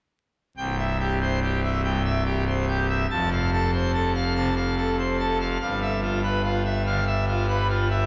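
A vinyl crackle sits beneath a wet church reverb with a 2.7-second decay, giving this short classical organ toccata the air of a large, resonant hall. A solo pipe organ on full organ sounds from 0.6 s to 8.1 s, placed up front, its mixtures lending a brilliant, majestic edge to a romantic voicing that spans from C1 to A5. The mood is jubilant. The music moves in a straight 4/4, with the harmony passing from C to F at 3.1 s and arriving on G6 at 5.6 s. Tuned to A4 = 443 Hz, it is cut from a longer piece and breaks off mid-flight.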